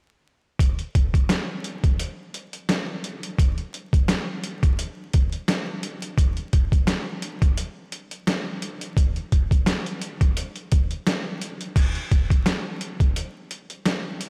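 Vinyl crackle and a light reverb coat this short hip hop passage, cut from a longer piece, giving it a gritty, tough mood. A trip hop sampler-style drum kit carries everything on its own, entering at 0.6 s and running until 14.3 s at 86 BPM in 4/4, with a 55% swing on the sixteenths that lends the groove a slight lilt. The kit is compressed and pitched down, pairing a thumpy kick with a medium-tuned snare, along with hi-hat and crash cymbal. Re-recorded in a small room and placed up front in the mix, the drums feel close and heavy. The arrangement moves into a new section at 11.8 s for its closing stretch.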